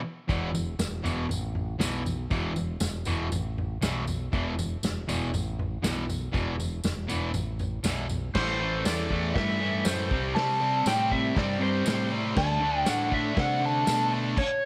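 A straight 4/4 beat drives this swaggering, gritty garage rock cut, taken from a longer piece, with a vintage acoustic drum kit of punchy kick, medium-tuned snare, toms, hi-hat and dark crash cymbals under a rolled-off top, joined by a jingly, close and dry tambourine. Up front, a bright, compressed fuzz guitar picks a double-tracked riff over an E5 chord, while a growling fingered electric bass, amped and tube-saturated, holds down the low end. At 8.4 s the harmony moves to Am, then C5 and D5, and an overdriven slide guitar played with fingerpicks carries a high, warm melody from 8.3 s to the close. Light reverb and a small room ambience keep the whole band sounding tight and raw.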